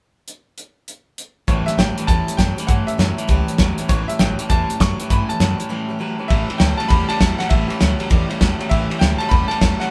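Rockabilly with a rowdy, rollicking mood, this cut from a longer piece swings at 199 BPM in 4/4, centred on A mixolydian. A cloth-damped, thuddy drum kit opens alone at 0.3 seconds, sitting up front with dark cymbals, a tight kick, a medium-tuned snare and a rolled-off top across hi-hat, ride, snare and kick. At 1.5 seconds the band lands on an A7 chord. A bright, slightly detuned upright piano carries the melody with audible action noise, and a twangy electric guitar at the edge of break-up drives a low riff. Behind them, a pizzicato upright bass with gut strings thumps woodily in the background, while a full-bodied steel-string dreadnought guitar picks out accompaniment, also in the background. A short break at 5.7 seconds sets up the closing section, and the whole take has the feel of a band playing live together in one room with light reverb.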